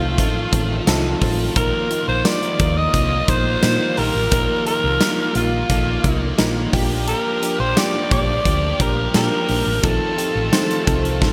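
A straight, steady 4/4 pulse anchors this uplifting, romantic slice of 1980s-style pop, cut from a longer piece. A huge arena drum kit joins at 0.2 seconds, its punchy kick, medium-tuned snare, hi-hat and tambourine sitting up front in gated reverb. Beneath it, a hollow-body short-scale electric bass plays with a dark, round, amped tone. A glassy FM electric piano with a bell-like attack and warbling chorus carries the accompaniment, joined in the background by a scooped, high-gain guitar, double-tracked with distortion, tube saturation and ensemble chorus, and a brassy, nasal analog pad holding detuned sawtooth chords with a filter sweep and vibrato. Up front, a raspy, gritty alto saxophone sings the melody with scooped notes and delay, while a soft, pure synth bell traces a gentle second line high above it over chords moving from F7 through Ebsus2/Bb and Gm7/Bb back to F7. The whole mix sits in a lush hall reverb with bright, digital 1980s-style production.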